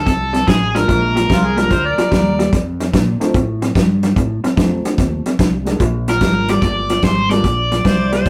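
An overdriven, bright electric guitar melody opens this swaggering, soulful electric blues shuffle at 146 BPM in swung 4/4, alongside a slightly broken-up, lo-fi guitar riff through a small old amp, a round, punchy fingered bass and an up-front acoustic drum kit with a fat snare and tight kick on hi-hat, kick and snare. A dark, mellow, worn baby grand piano comps from 0.7 seconds, and a clear, overdriven harmonica with light vibrato and scooped notes adds a jazz-style second line at 1.3 seconds and again near the end, while the lead guitar returns at 6.1 seconds over changes moving from F to Bb7 and F7. The short excerpt has a rough rehearsal-room sound with tube saturation and moderate studio ambience.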